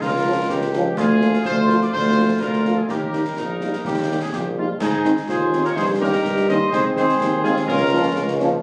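A clear, vintage-toned tuba sits up front carrying the bass of this spirited, proud military-style march for wind band, beneath a distant, roomy trumpet section with light vibrato on the melody, a mellow woodwind section on a second line, a dark French horn section tucked in the background, and concert snare, bass drum and clash cymbals with dusky cymbals in a live room, while a very quiet, close-miked trombone section adds sustained chords from 5.0 s and a punchy euphonium joins on a second line at 5.3 s, the ensemble captured on a phone in the room with moderate reverb and compression.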